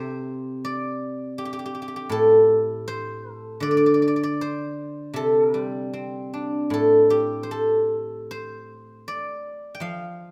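Unfolding in a free, rubato 4/4, this flowing and elegant passage of Chinese traditional music features a solo guzheng played with fingerpicks throughout its 10.3 seconds, sitting up front with a silvery, ringing tone across a broad range, set in moderate recital-hall reverb, and it is cut from a longer piece.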